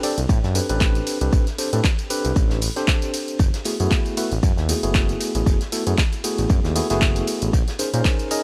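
Deep house at 116 BPM with a swung sixteenth feel, this hypnotic, late-night fragment of a longer piece sets clean tine electric piano stabs, shaded by medium tremolo, sidechain pumping and analog delay through a combo amp, over Am11, F#m11 and A#m11 chords. A smooth sawtooth-and-triangle synth bass with tube saturation and pumping enters at 0.2 s beside an up-front, deep electronic kick at 0.3 s. Around them sit a layered electronic kit of handclaps, dark hi-hats, ride cymbal and tambourine, and a very quiet acoustic kit of hi-hat and medium-tuned snare with a rolled-off top, all in a dry mix.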